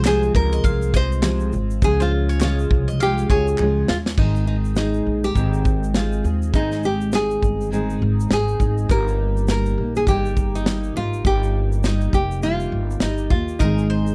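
The nylon-string guitar carries the melody up front, its classical, fingerpicked tone catching a touch of finger squeak as it enters at 0.1 seconds and sings through to the close of this sunny, heartfelt acoustic pop passage in Ab major. Beneath it, a double-tracked steel-string acoustic guitar is fingerpicked for a dark, full-bodied jumbo accompaniment, while a pizzicato upright bass sits up front with a woody, thumpy tone. A modern studio drum kit keeps a swung 102 BPM groove in 4/4, with a punchy kick, medium-tuned snare, shaker and bright cymbals, and it plays a fill from 3.6 to 4.2 seconds into the second part of the piece. A bowl-back mandolin adds picked, double-string arpeggios at the opening and returns briefly near the end, and a crisp group handclap sits in the background for the first few seconds. The harmony moves from Fm/C and Db to Ab and Eb/G before landing back on Ab, all captured in a dry, close 1970s-style studio sound with little reverb.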